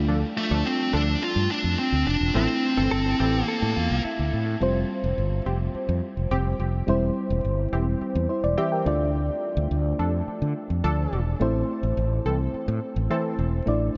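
Pop in D minor at 106 BPM, dramatic and moody, where a round, warbling FM electric piano with chorus and a direct, up-front fretless bass carry the chords alongside punchy, detuned sawtooth polysynth stabs with chorus and analog delay, while a dark, high-gain distorted lead guitar states the melody from 0.4 to 4.0 s and a compressed clean electric guitar with spring reverb and delay adds a brief second line from 2.9 s, the whole mix soaked in a huge ambient reverb with a muted top end for a dreamy haze.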